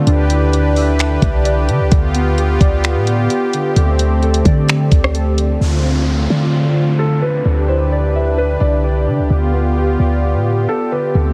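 Through a heavily compressed, radio-like digital ambience, this spacious, melancholic cloud-rap excerpt in D dorian moves at a half-time 130 BPM, with a detuned sawtooth analog pad holding chorused, sidechain-pumped chords over a deep, boomy 808 bass while warbling, nostalgic lo-fi synth keys spin filtered, delayed arpeggios, a tape-warm R&B kit of knocking kick, hi-hat, finger snaps and rim clicks drops out at 5.5 seconds, a faint electronic downlifter arrives at 5.6 seconds, and a soft, intimate felt-muted upright piano carries the melody from 7.0 seconds.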